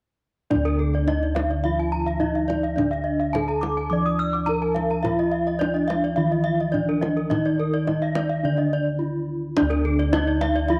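Set in a moderate spring reverb, this shimmering, ceremonial Balinese gamelan passage in D pelog moves at a straight 106 BPM in 4/4. A wooden-mallet bronze metallophone carries the airy melody in paired tuning, over round, beating bossed gongs up front on the bass and a mellow, padded-mallet metallophone accompaniment in the background. Two horn-mallet metallophones ring out bright arpeggios, one close-miked, dry and full, while a deep, vintage, band-limited kendang played with hard hands keeps the percussion going, and a drum fill from 9.1 to 9.6 seconds rounds out a break.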